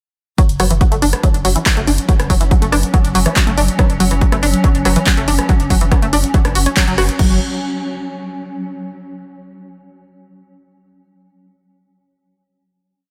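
Dark and relentless, this short piece of driving peak-time techno runs as a single drop from 0.4 seconds, anchored by a techno drum kit's up-front four-on-the-floor kick and crash cymbal, while an analog drum machine, re-recorded in a small room, adds handclaps, rim clicks and pumping hi-hats. A deep, round sub bass rumbles between the kicks through overdrive and a low-pass filter, a detuned sawtooth-and-square synth repeats an eight-step sequence through chorus, overdrive, cassette tape and tape echo, and a tense, granular drone swarms in at 1.5 seconds with its own reverb, the bass, synth and drone each pumping with the sidechain. The band hits an accent at 6.8 seconds before a final note rings out in light reverb.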